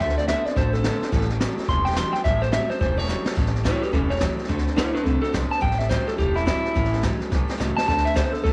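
A clean electric guitar solo through a small old amp opens this rollicking, upbeat rockabilly clip cut from a longer piece, its warm, slightly broken-up lead sitting up front with tape echo until about 3.4 seconds. Beneath it, a second amped guitar plays a twangy, lo-fi riff with a vibrato effect. A bright, full-bodied steel-string acoustic picks along in the background, while a woody, thumpy pizzicato upright bass and a brushed drum kit with a high-tuned snare and boomy kick drive the swinging groove, the drums adding fills at 3.1 and 7.3 seconds in a small, lightly reverberant room.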